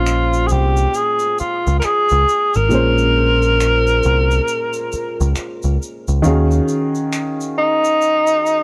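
Sultry and introspective, this short cut from a longer piece is slow R&B with a neo-soul lean and a lazy swung feel. A breathy tenor saxophone carries the melody up front, its whispered subtone, soft attacks, scooped notes and vibrato giving it a vintage, jazz-style intimacy. Beneath it, a grand piano supplies warm, natural accompaniment, with the faint noise of its action audible in the close sound. A deep dub picked electric bass sits round, dark and punchy in the mix until it drops out at 6.6 seconds, just after the harmony moves from Bbm9 to Ebm11 at 6.2 seconds. Soft finger snaps and an egg shaker add a band-limited, acoustic pulse low in the balance. The whole piece has the dry, close feel of a 1970s studio.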